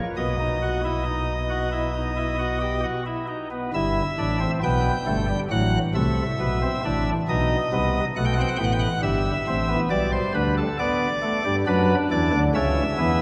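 Set in a cavernous cathedral with a long, wet reverb, this cut from a longer piece presents a driving, serious baroque-style three-part fugue for solo pipe organ. A nasal cornet stop sits up front, its baroque voicing marked by a chiff and a trembling tremulant, and the lines range from deep pedal tones to bright upper notes. After an opening passage, a new section begins at 3.7 seconds and runs to the end at 13.2 seconds, its minor-key harmony darkened by a half-diminished chord and a dominant seventh.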